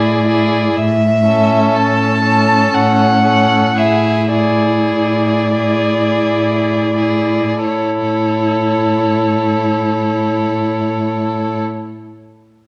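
A string quartet opens together on a chord over an A in the cello, setting a serene slow romantic movement in A major and 3/4, cut from a longer piece. The tempo sits between 40 and 64 BPM with a rubato feel, and it slows down over the first 7.6 seconds before a new section begins. The first violin carries the melody high and smooth with vibrato, sounding distant, while the second violin holds a rich, even line just beneath. The viola fills in the middle with a soft attack, expressive portamento and a close presence. The cello anchors the bass up front with a warm, expressive tone, gliding with portamento and bowed vibrato. A recital hall reverb surrounds the quartet, and the sound carries the worn, warbling pitch drift of old cassette tape.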